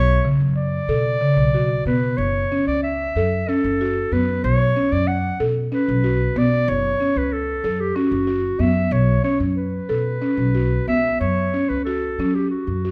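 Contemporary chamber music in a restless, urgent 7/8 at 186 BPM counted in eighths, set in B minor and cut from a longer piece. A smooth, soft-attacked clarinet carries the melody up front alongside a woody pizzicato upright bass, while a buzzing marimba played with soft mallets adds round, dark arpeggios from 0.2 seconds. The harmony moves between Bmadd9, F#m7 and Bsus2 before settling on F#5 at 11.2 seconds, all within a moderate recital hall reverb.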